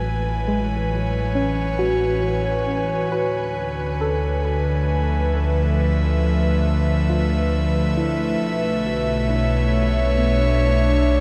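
An airy, breathy pad fades in up front, its slow-attack chords moving from Amaj7 through Dm6 to Bm11 under chorus and shimmer reverb, while a deep, evolving, ring-modulated analog bass fades in beneath and a soft, wave-folded pluck plays dark arpeggios in the background through analog chorus, diffuse delay and shimmer as it fades out, giving this serene, spacious ambient excerpt in 3/4 a huge, wet reverberant space.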